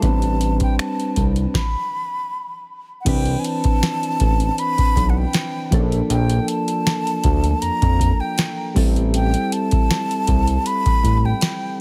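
Heavily compressed and radio-like in a digital ambience, this tender, smooth contemporary R&B excerpt at 79 BPM in C major has a breathy concert flute with vibrato and digital delay singing a high, expressive melody over soft, round electric-piano-like synth keys with chorus, a saturated sawtooth synth bass, and a booming analog drum machine with a deep kick, crisp snare, metallic hats, finger snaps and crash, all pausing for a brief stop from 1.5 to 3.1 seconds before Cmaj9, Bbmaj7 and Am7 chords carry the groove onward.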